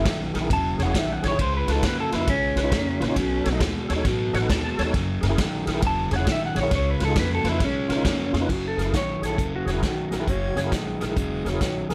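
Lightly reverberant and gritty, this swaggering electric blues shuffle excerpt has a lo-fi, slightly broken-up electric guitar taking a solo from the start to 8.5 seconds over a fat tonewheel organ whose slow rotary speaker, key click and overdrive add a fill at 4.1 seconds, an overdriven semi-hollow guitar riff, a woody pizzicato upright bass and a swinging big-band drum kit with a boomy kick, before a raspy, growling tenor saxophone slips in at 10.3 seconds.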